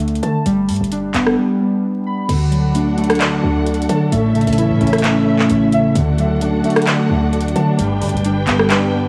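Trap-flavored hip hop in D major at 131 BPM with a half-time feel, wistful yet triumphant, opens with a break over a G chord where warbling, detuned lo-fi synth keys spin nostalgic arpeggios through chorus and analog delay over a punchy, tight 808-style bass and an electronic trap kit of metallic hi-hats, handclaps, rim clicks and crash, until at 2.3 seconds a mellow, clean tine electric piano and a dark, lush bowed string section with expressive vibrato join as the harmony moves D–A–D–G, all set in an echo-heavy chamber reverb with vinyl crackle.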